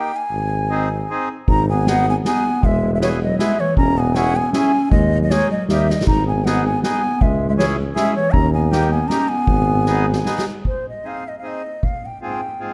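A breathy, up-front bamboo bansuri carries the melody of this jolly, bouncy alpine folk dance in swung 3/4, over reedy accordion, a tuba bass with light vibrato and a classical-style clarinet second line, while a soft-mallet drum kit with boomy kick and dark cymbals joins at 1.5 s and plays fills at 5.9 s and from 9.9 s, all on a moderately reverberant scoring stage in this cut from a longer piece.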